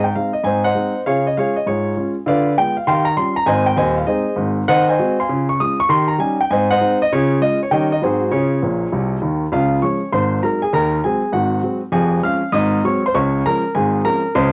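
A warm grand piano opens the recording alone, playing swinging, exuberant stride jazz in 4/4 at a brisk 199 BPM with a swing feel on the eighth notes. It starts in Ab major and moves to Db major at 4.7 s, running through a lively progression that includes a diminished chord, ninths and sevenths. The piano sits up front and covers a broad span from Eb1 up to F6. A short piano fill at 8.6 s leads into a new passage at 9.5 s that keeps circling between Ab7 and Db. The instrument is tuned to A4 = 435 Hz, and the home cassette recording places it in a moderate studio reverb, lending this fragment of a longer piece a homespun, vintage character.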